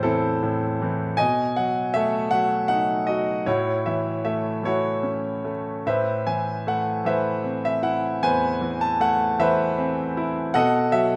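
In a rubato 6/8 at 52 dotted-quarter beats per minute, this peaceful, tender fragment of lyrical classical music features a solo grand piano, clear and natural with long sustain and placed up front, spanning E2 to A5 over chords moving from Amadd9 through B7 and F#m7/A back to Amadd9 and B7 at 10.6 seconds, all set in a moderate concert-hall reverb.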